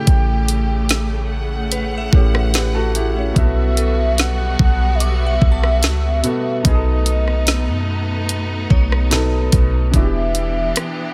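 Longing and sensual, this slow contemporary R&B excerpt moves at 73 BPM in E dorian, with a velvety synth lead carrying the melody through chorus and tape echo over a boxy baby grand piano and a lush, bowed string section holding sustained chords. A glassy, crystalline FM bell adds phaser-tinted texture in the background until 9.5 seconds, while a deep, boomy 808-style bass and an up-front electronic drum kit with a knocking kick, woody snare, rim click and hi-hat anchor the groove. The dry mix stays close and intimate as the harmony moves from A7 through Gmaj7/B and B7 before settling on Em7 at 9.9 seconds.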